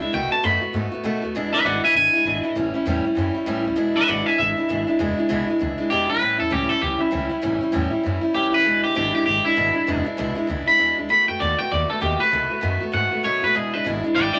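A bright, twangy electric guitar carries the melody in this rollicking, upbeat rockabilly excerpt, opening with a clean solo over a B7 in the first 1.3 seconds before moving through E7, A7 and B7 changes in E mixolydian. Alongside it, a boxy, picked steel-string acoustic guitar with audible finger squeak and a woody, thumpy pizzicato upright bass drive a swung 197 BPM groove in 4/4. Moderate studio reverb and a layer of vinyl crackle give the sound a vintage sheen.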